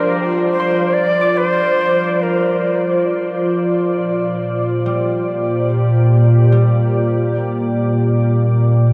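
A glassy FM pad sits up front through the whole 8.9 seconds of this ambient excerpt in Bb major, holding sustained chords with a slow attack and long release, its dark, ethereal tone thickened by ensemble chorus and its own reverb. In free time, the mood is luminous and warm, moving from a Bb7/F chord to a Bb6 chord at 3.9 seconds. A reedy bamboo shakuhachi carries the melody only in the opening 3.1 seconds, its airy, soft-edged tone carrying vibrato and rolled-off highs, trailed by a diffuse ambient delay. Farther back, a mellow concert harp plays fingerpicked, ringing arpeggios throughout, also wrapped in diffuse delay. A huge, wet reverb with a long tail surrounds the whole piece, leaving the sound suspended and spacious.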